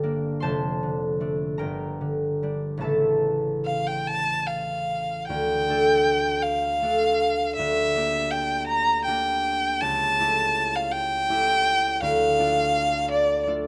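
A romantic classical duo in D minor, this excerpt moves slowly and freely in 6/8 at roughly 48-56 dotted-quarter beats per minute, carrying a yearning, solemn mood. A concert harp opens alone with ringing, fingerpicked chords spanning a deep range. At 3.7 seconds a single bowed violin enters up front with a focused, vibrato-rich melody and a smooth top. Close, detailed microphones capture both instruments within a moderate recital-hall reverb as the harmony moves through minor and dominant chords before settling back on D minor at 12.0 seconds.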